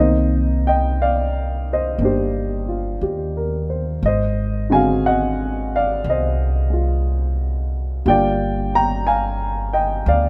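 Set in a slow 4/4 with a swung eighth-note lilt, this brief cut from a longer jazz ballad carries a wistful, melancholic mood. A baby grand piano supplies the accompaniment, its tone warm and natural, sitting up front as it moves from Cm9 to Ab7#11 and then to Gm7. Beneath it, an acoustic upright bass played pizzicato on steel strings adds a woody, dark foundation, also placed close to the listener. Both instruments play together throughout the full 10.3 seconds. A light reverb gives the pair a gentle sense of space.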